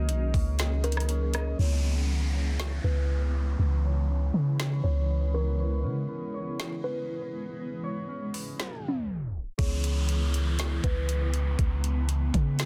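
A deep, round 808-style bass sits up front in this hazy, melancholic half-time cloud-rap excerpt, dropping out at 6.1 seconds and returning at 9.6 seconds, alongside a smooth R&B drum kit with a knocking kick, metallic hats and rim clicks. Behind them, a cloudy granular pad holds sustained chords with built-in reverb and sidechain pumping, while a soft kalimba melody, thumb-plucked concert harp arpeggios through delay, and a mellow rosewood marimba drift in the background. An electronic downlifter and a filter sweep shape the middle stretch, which ends in a tape stop with the kick muted from 8.6 seconds, all under a dense, heavily limited master.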